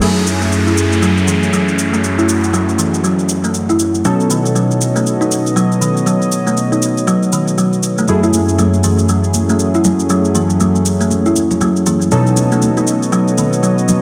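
A woody, thumb-plucked kalimba spins short, mid-forward arpeggios through a low-pass filter and dub echo in this hypnotic, spiritual afro house excerpt at 119 BPM in F# dorian, over a detuned, wave-folded analog pad holding chorused chords, round, mellow sawtooth keys stabbing through echo, a tape-tinged electronic crash and shaker in a small room, a downlifter sweeping down until 4.0 s, and band-limited congas joining in the background at 8.1 s as the harmony moves between F#m7 and B7.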